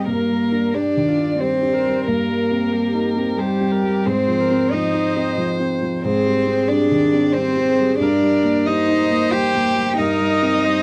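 Longing and fragile, this short neoclassical piano-and-strings passage moves at 91 BPM in a rubato 3/4. A single dark, woody violin carries the melody with vibrato, while a soft-attack, sul tasto cello sings a warm second line. A mellow grand piano and an airy, intimate viola supply accompaniment over chords such as Ebmaj7/G, Cm7/G, Fm7/Ab and Abmaj7, all heard in a dry, close 1970s-style studio sound.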